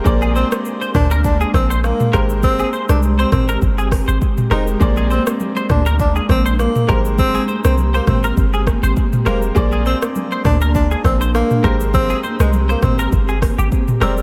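Romantic and sunny, this afrobeats excerpt sets a breathy tenor saxophone melody, with vibrato, scooped notes and analog delay, over a clear, worn grand piano, an ethereal chorused pad, a boomy, up-front 808-style bass and a produced afro-pop kit of deep kick, smooth hi-hats, rim click, shaker and toms, while a twangy, compressed clean electric guitar riff with chorus and delay sits above and distant, high-tuned congas join very quietly at 4.8 seconds.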